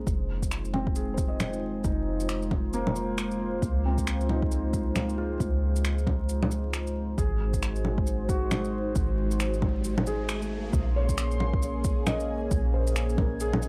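Up-front, overdriven electronic shaker, finger snaps and bongos drive this swung, ghostly, wistful future garage excerpt at 135 BPM in Bb minor, over a deep, overdriven kick drum re-recorded in a small room. A soft, round 808-style bass, a moody, detuned analog pad with chorus, and a mellow felt-muted upright piano with audible action noise and tape echo each pump with the sidechain through Fm7, Dbmaj7 and Ab7, reaching Bbm9 at 10.7 seconds. A background riser enters at 8.8 seconds and runs until 10.7 seconds, through a brief break. A reversed, dreamy granular texture swells in at 11.8 seconds, while the whole recording sounds dry and gritty with transformer saturation and vinyl crackle.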